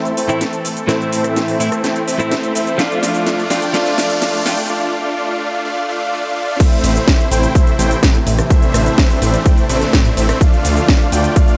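Festival progressive house at 126 BPM in A minor, euphoric and anthemic, this clip opens with a build-up where huge detuned supersaw chords ride a filter sweep over a soft, nasal unison pad, a bright, clean direct-recorded electric guitar with tremolo and dub echo, a background riser from 2.0 to 4.7 s, and an overdriven house kit of cracking snare and metallic hats rolling through a drum fill before a short break. At 6.6 s the drop lands with a punchy, up-front electronic kick, joined at 6.8 s by a thick, beating, menacing detuned saw bass, the synths pumping against the sidechain as the chords move between Am and Dm. A huge ambient reverb gives the mix a large-room scale.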